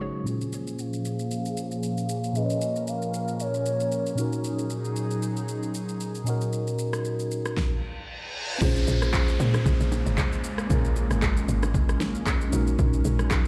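This hypnotic, soulful amapiano excerpt sounds as if it was played on a big sound system in a bare room, carrying a large studio reverb, and it is cut from a longer piece. A mellow tine electric piano opens with a fill at the break and keeps playing chords through the phaser and a low-pass filter, while an airy, breathy pad with a nasal, detuned edge sustains beneath it, pumping against the sidechain. From 0.3 seconds a hollow, woody clarinet-like synth lead sings a short melody with vibrato and delay, and a deep house kit enters with a punchy kick, fat overdriven snare, handclaps, rim clicks and shaker sitting up front as a filter sweep builds over the Bbm7 and Ab7sus4/Bb chords. A reverse cymbal and downlifter sweep in from 7.8 seconds into the second section, where at 8.6 seconds a deep, round log drum bass arrives with a fast, decaying attack and a dark, percussive punch, joined by very quiet, ringing congas and bongos recorded close and dry.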